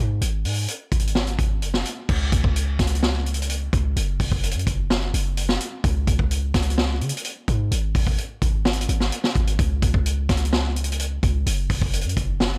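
A hard-hitting 808-style bass, punchy and heavy with a sine body, a noise layer and a fast, decaying attack, anchors this dark, melancholic half-time trap excerpt, joined at 0.2 seconds by an up-front vintage acoustic kit of punchy kick, medium-tuned snare, hi-hat, crash and dark, rolled-off cymbals in a dry studio room, with a change of section at 2.1 seconds.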